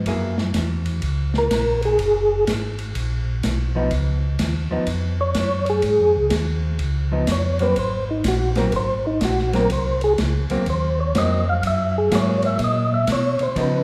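Soul jazz organ trio at 124 BPM in a swung 4/4, bluesy and greasy, cut from a longer piece and bathed in the reverb of a wet recital hall. A mellow, round tonewheel organ carries the bass through a slow rotary speaker and chorus vibrato, while a dark, boomy-kicked jazz kit with dark cymbals keeps time on hi-hat, ride and snare. From 1.4 seconds a soft, flute-like percussive organ takes the up-front solo over Gb9, Dbadd9 and Ab9 chords, and a clean, fingered hollow-body guitar adds dark accompaniment, briefly at the very start and then from 3.8 seconds onward.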